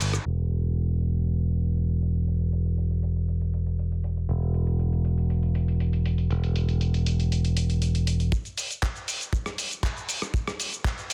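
A bright, punchy picked electric bass sits up front alongside a gritty, compressed sampler-style soul drum kit of cabasa, handclaps, hi-hat and rim click with soft clipping on the snare, opening this sensual, sleek nu-disco fragment in E minor at 119 BPM, where a filter sweep runs until a dry, tight kick drum arrives at 8.3 seconds to drive a build-up through 11.1 seconds, all within a small room and a dense, heavily limited, low-pass-filtered master.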